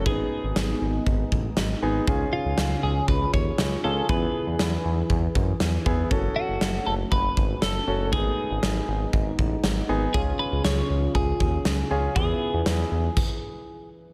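A clean, twangy twelve-string electric guitar opens this melancholic, nocturnal synth-pop excerpt, carrying the melody through a phaser and digital delay. It arrives alongside a clear, polished concert grand piano with deep bass, a smooth sawtooth-and-triangle synth bass sitting up front, and a detuned, wave-folded pad in the background whose slow attack, filter swell and long release are coloured by chorus and phaser. A huge acoustic arena kit joins at 0.1 seconds with a punchy kick, a medium-tuned snare and crash cymbal, all soaked in gated reverb. The straight 4/4 groove moves through a brooding cycle of G#m, C#, E and F#m under light small-room ambience. The band cuts to a stop at 13.2 seconds, where the chords end.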